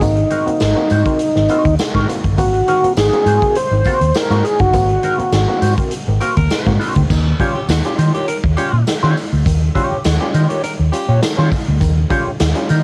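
Energetic and strutting, this funk piece at 102 BPM rides a round, up-front fingered electric bass, a punchy, roomy big-band drum kit with crash, hi-hat, kick and snare, a jingly tambourine in the background, and muted, stringy clav stabs over an Ab9 chord moving to Eb9. A mellow tonewheel organ carries the melody through slow rotary speaker, chorus vibrato and light overdrive until 5.7 s, while a dark, clean electric guitar with wah supplies accompaniment. During a band accent, a breathy, raspy tenor saxophone adds a second line from 6.2 s, all with the homespun character of a small-room cassette recording.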